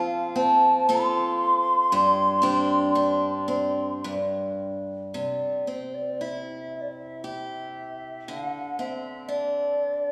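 Rubato in 3/4 at about 54-61 BPM, this tender, nostalgic Celtic slow air, cut from a longer piece, features a distant, hollow wooden flute carrying the tongued, vibrato-touched melody over a bright, boxy picked steel-string parlour guitar sitting up front, tuned to A4 = 436 Hz in a church-like hall with a 1.8 s reverb tail, and settling into C lydian from 5.1 s.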